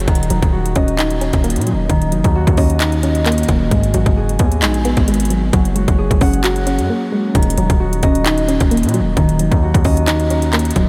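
A dreamy mix soaked in huge ambient reverb frames this eerie, melancholic trap cut, taken from a longer piece and moving in a half-time feel over Ebm7, Abm7 and Gbadd9 chords. A thumb-plucked Celtic harp rings out arpeggios through a low-pass filter and tape echo, while a soft, round synth pluck with chorus adds dark accompaniment and a distorted, saturated 808-style bass sits heavy and aggressive underneath. The up-front electronic kit of hard-clipped kick, metallic hi-hats and handclaps drops out from 6.9 to 7.3 seconds, returning as the Ebm7 chord comes back.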